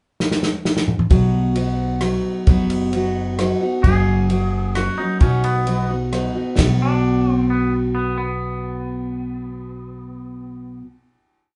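Honky-tonk and classic country in 3/4 with a sunny, down-home mood, opening with a drum fill on an up-front acoustic kit played with bundle sticks before a strummed, fresh-stringed dreadnought guitar and a woody, thumpy pizzicato upright bass on root and fifth settle into the groove, while a clean, twangy fingered electric guitar adds blues licks from 3.8 s until the band holds a final chord at 6.6 s, all captured live in one room with wet, short reverb and a soft, rounded top end.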